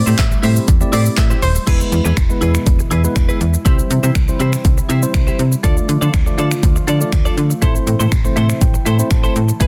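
This dance-pop clip at 121 BPM in A minor feels bittersweet yet energetic, moving through Am7, E, C, Dm and back to Am over a straight 4/4 pulse. An up-front deep house kit drives it with a deep kick, a woody snare given soft clipping, dark hats, shaker, finger snaps, handclaps and a crash, while a snappy FM bass with a metallic, fast-decaying attack pumps under sidechain compression. A tine electric piano heard through a combo amp and a twangy, bright, direct-recorded clean guitar with analog chorus fill out the middle, over a smooth, mellow analog pad sitting very quietly underneath. A round, warbling analog pluck carries a brief melody with chorus and delay, stopping at 1.5 seconds, and a distant, hollow group handclap appears only between 0.2 and 1.3 seconds. Near the end, the electric piano takes a fill from 8.1 to 9.6 seconds, all wrapped in digital ambience and a dense, heavily limited modern master.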